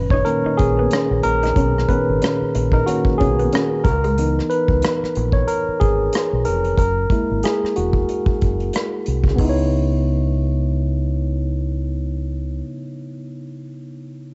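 Sultry and smooth, this neo-soul R&B fragment, cut from a longer piece, moves at 92 BPM in 4/4 with a 57% swing on the sixteenths, in C# dorian and tuned to A4 = 437 Hz. A barky tine electric piano sits up front through a combo amp, clean in tone with a cassette-tape color, and takes the lead with a solo over chords moving from Bmaj9 to C#m9 to F#9. Beneath it, a deep dub fingered electric bass, dark and round, holds the low end until 12.6 seconds. An unplugged acoustic drum kit played with bundle sticks supplies hi-hat, punchy kick and rim click until 9.6 seconds. Early on, a lo-fi electric guitar through a small old amp adds a slightly broken-up, compressed second line with harmonic tremolo, tucked in the background and gone by 4.1 seconds. Light reverb and studio ambience frame this home cassette recording, whose top end stops at 7.9 kHz, as the piano carries on to 14.3 seconds.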